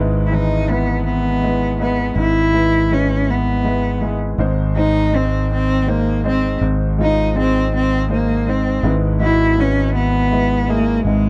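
Acoustic folk-pop ballad in a slow, straight 6/8 at 54 BPM, cut from a longer piece, with a hopeful, nostalgic mood. A brilliant concert grand piano with deep bass and long sustain carries the accompaniment over a round, up-front fingered electric bass, while a single bowed cello enters at 0.3 seconds with a clear, focused melody, smooth on top and touched with vibrato. The dry, close 1970s-style studio sound keeps the parts direct and present as the harmony moves from E/G# to Ab and back.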